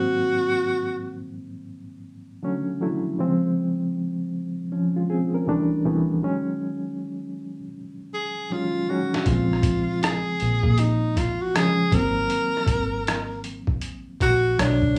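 A warm tenor saxophone with vibrato and scooped notes takes the jazz-styled solo lead in this sultry, introspective neo-soul R&B excerpt at 79 BPM. It sounds briefly at the start, then returns at 8.1 seconds, carrying a slapback echo over a reedy, worn, slightly out-of-tune electric piano whose fast tremolo shimmers through its built-in speakers. A gritty, pitched-down boom bap drum kit with a thumpy kick and medium-tuned snare enters at 9.1 seconds, and a dark, round, foam-muted fingered bass follows at 9.3 seconds, all within a rough home-demo mix with a small room sound.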